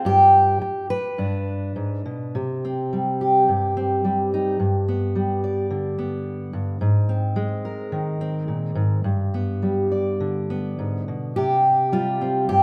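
A fingerpicked steel-string acoustic guitar, full-bodied and up front, plays alone through this wistful, intimate folk excerpt in C minor at a rubato 107 BPM, ranging from G2 to D5 over chords moving from G5 through G, C5, G and Ab back to C5, set in a moderate scoring-stage reverb.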